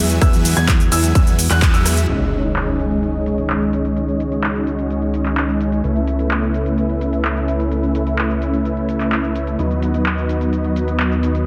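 A dense, heavily limited master in a moderate concert hall reverb carries this euphoric, anthemic festival progressive house excerpt. It opens on a drop, where a punchy, overdriven electronic kick hits until 1.7 s and a dark, intimate baby grand piano with audible action noise and dub echo plays arpeggios until 2.1 s. Above a fat analog bass with ring modulation and filter sweeps, a huge detuned supersaw lead riffs up front through a moving notch, low-pass filter and dub echo, joined by a lush, warbling vintage pad in the background and a big-room drum kit of metallic hats, handclaps, rim click, shaker and crash cymbal; the lead, bass, pad and piano all pump to the sidechain, and an electronic impact arrives at 2.1 s as the second section begins.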